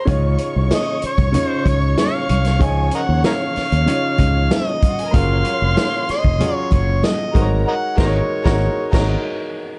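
A straight 4/4 groove at 95 BPM, carried by a vintage drum kit with a tight kick and a round, punchy fingered electric bass up front, sets up this lush 1970s-style soul fragment in Db major, with soft-handed congas murmuring in the background until 7.5 seconds. A clear grand piano fills out the harmony over Dbmaj9, Gbmaj9 and Ab9sus4, and a bowed studio string section with vibrato and portamento adds a second line, while an overdriven, gritty amplified harmonica takes the jazz-style solo lead from 0.7 seconds with tongue slaps and scooped notes. The band hits an accent at 7.7 seconds and a drum fill closes it out, all inside a dark, small-room production.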